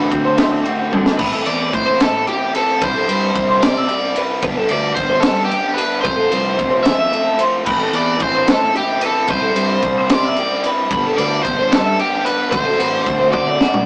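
An intricate, playful excerpt of math rock and midwest emo in a straight 6/8, cut from a longer piece and heard through a rough rehearsal-room recording with tube saturation, a small-speaker character and a wet booth ambience. A twelve-string electric guitar spins clean, twangy, compressed arpeggios through a phaser for the whole passage, while a second twelve-string offers accompaniment only in the opening 1.2 seconds before the chords move from D7 into a cycle of Am7, Cadd9, G and Fmaj7. Beneath them, a double-tracked, scooped overdriven guitar carries a riff in the background, and a fuzzed, fingered bass adds punchy, overdriven weight. A crunchy overdriven guitar takes the melody up front from 1.5 seconds onward. The acoustic drum kit sounds gritty and pumping, with a high-tuned snare, punchy kick, crash, ride and toms, marking drum fills at 0.9 seconds and again at the close.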